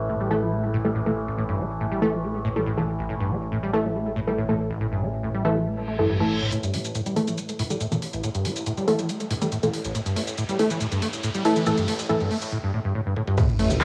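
Driving and intense, this excerpt of peak-time techno runs at 140 BPM in a straight 4/4, opening with a deep, rumbling detuned saw bass, a squelchy, resonant acid riff sitting up front, muted dub chord stabs under a filter sweep, and a drone of moving overtones carrying chorus, phaser and reverb, all with sidechain pumping and cassette-tape grit on the upper synths. A reverse cymbal at 5.9 seconds ushers in an overdriven, layered techno kit of handclaps, hats, ride, shaker, toms and crash at 6.5 seconds, as a riser and a filter sweep on the acid bass build toward a brief break and a drum fill. The distorted electronic kick finally lands at 13.4 seconds with an impact and sub drop, all set in a moderate spring reverb with a homemade cassette character.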